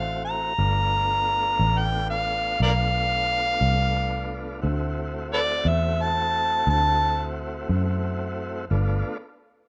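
An overdriven, amplified harmonica leads this gritty, soulful slow blues, playing a jazz-inflected solo melody up front with tongue slaps and scooped notes, before dropping out at 7.3 seconds. The tempo sits at 59 beats per minute in a straight 12/8 feel, in G mixolydian, and the short fragment is cut from a longer piece. Behind it, a tonewheel organ holds smooth, clean sustained chords through a slow rotary speaker with vibrato and plate reverb, lasting until 9.2 seconds. A vintage electric bass, fingered and foam-muted, gives a dark, round, amped low end up front. The harmony moves from a rootless D7 to G7, back to D7 and again to G7, all set in a moderate studio room with the rough feel of a home demo mix.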